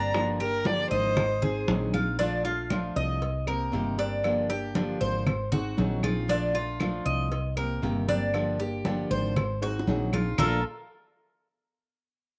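A bowed violin opens this danceable Cuban son and guajira fragment with an expressive, vibrato-laden phrase that ends at 1.6 s. Beneath it play a fingerpicked nylon-string guitar with audible finger squeak, a bright, metallic tres picking arpeggios on double strings, and a growly, punchy fretless bass with a subtle chorus, all moving through a cycle of Gm7, Ab7, Bbmaj7 and Cm7. In the background, congas with a thick, damped skin sit alongside round, low-tuned bongos and cowbell and compressed claves, with drum fills at 1.9 s and from 9.6 s, heard in a small room with moderate spring reverb.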